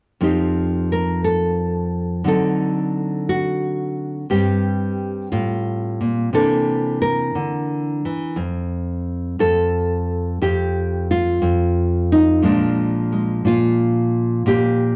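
Solo jazz on nylon-string guitar, swinging and sophisticated, moving at a relaxed 59 BPM in 4/4 with a 68% swing on the eighth notes, centred in F mixolydian. The guitar is fingerpicked in a classical manner, its fresh strings giving a bright, acoustic tone that sits up front in the mix, ranging from F2 up to Bb4. The opening passage walks through rich extended harmony, F9, D7b9, Gm11 and C9, before the second section at 8.4 seconds briefly drops the chords away and then settles onto a Bb13. A moderate studio reverb lends the sound the air of a sizable room, as if captured live. This short fragment is cut from a longer piece and runs until 15.0 seconds.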